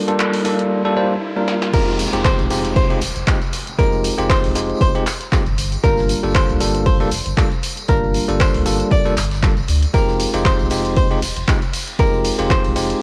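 A swung 4/4 deep house groove at 117 BPM sets a late-night mood in F dorian, opening with a short build where a background riser and downlifter sit under bell-like, up-front electric piano stabs that pump with sidechain and carry analog delay and cassette grit, above a round sine sub bass and a punchy analog drum machine of snare, handclaps, hats, ride and crash in a short small room. After a drum fill at 1.5 seconds the drop lands at 1.7 seconds, bringing in an electronic kick, a jingly, compressed tambourine and a very quiet acoustic kit's hi-hat and snare in a stone room. A dark, hollow-body archtop guitar plays a clean, picked melody through tape and delay over chords moving between Gm7 and Fm7, the whole piece wrapped in moderate spring reverb and a homemade cassette sheen.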